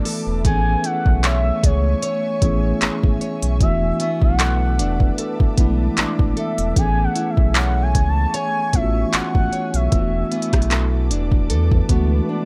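A dry, close sound frames this dreamy, smooth contemporary R&B fragment at 76 BPM in A major, where a soft-kicked electronic drum kit with handclaps, hi-hat and rim click sits up front beside a deep, full sub bass with octave, while a mellow tine electric piano and a fingerpicked, full-bodied nylon-string guitar with delay carry the accompaniment over chords moving between Amaj7 and E7sus4. An ethereal, airy pad with ensemble chorus, phaser and sidechain pumping holds sustained chords at a low level. A detuned lead glides through the melody with portamento, vibrato, chorus and delay from 0.5 s, and the passage breaks off at 12.3 s.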